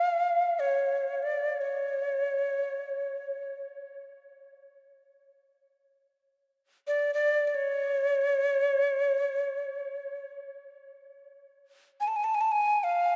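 Drenched in a huge ambient reverb with a 4.8-second tail, the recording has a dark, warm production that lets each phrase hang in the air. A breathy cedar flute in the Native American style plays alone and up front in free time, its woody tone marked by audible chiff, tongued attacks, vibrato and lifted highs, with a touch of delay trailing its notes. This meditative world music fragment, cut from a longer piece, lasts 13.2 seconds and restates its opening phrase at 10.7 seconds.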